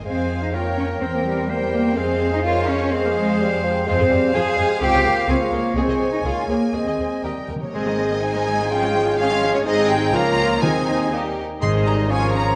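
Set in a wet scoring-stage reverb, this excerpt from a quick classical-period orchestral movement sounds spirited and cheerful, moving at 125 BPM in 2/4 with a rubato feel. It opens in F minor and turns to A-flat major at 3.9 s. A close, expressive chamber violin section carries the melody with rich vibrato. A second, focused violin section sits in the background on a supporting line alongside a clear oboe, an airy flute section with crisp attack, and a very quiet clarinet with soft, warm tone. Beneath them a lush viola section and a mellow bassoon fill in the accompaniment, while a vintage-toned French horn section holds soft-edged sustained chords. The bass is anchored by a smooth, even cello section and a double bass section in the low register. Timpani played with medium mallets sound close and dry, entering with a short fill at 7.2 s just before the second section begins at 7.7 s, and returning near the end.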